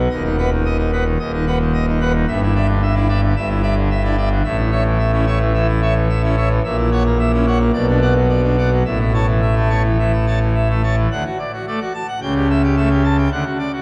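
A dark production sets the scene, with a pipe organ sitting up front inside a cathedral reverb whose tail lingers for 4.6 seconds. This stormy, dramatic classical toccata moves at 109 BPM in a straight 4/4, tuned to A4 = 443 Hz, and is cut from a longer piece. The organ plays alone on full organ with mixtures drawn, its majestic, brilliant tone spanning from D#1 up to A5 in a romantic voicing. The harmony travels from B/D# through Em7/G, A, F#7/A# and Bm before settling back on A. At 11.1 seconds a new section turns toward D, passing through A7/C# and landing on D as the recording closes at 13.8 seconds.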